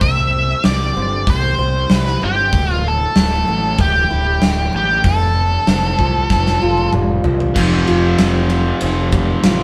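Brooding and cathartic, this quiet-loud alternative rock passage at 96 BPM sets a dark, up-front octave-fuzz lead guitar melody over a boxy fingerpicked acoustic archtop, a bright, punchy fuzz bass and a big-room rock kit with a fat snare, moving through C, Dsus2 and Fadd9 until the lead stops at 6.9 seconds and a drum fill from 6.3 seconds brings in a crunchy overdriven guitar riff, joined by a background distorted electric guitar riff, at 7.5 seconds over Fsus2, all played live in one lightly reverberant room.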